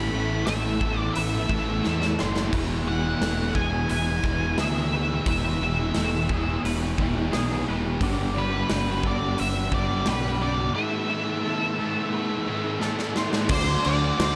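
A growling, overdriven fingered electric bass sits up front in this blissful, dreamy shoegaze and dream pop rock excerpt, beneath a dark octave-fuzz lead guitar melody with slapback echo, a twangy, compressed clean guitar playing arpeggios through ensemble chorus, a bright, double-tracked crunchy guitar riff that stops at 13.5 s, an overdriven guitar riff washed in reverse reverb, a thick fuzz guitar riff in the background, and a big, natural acoustic rock drum kit that enters at 0.5 s and fills at 1.8 s, set in a small room with light reverb.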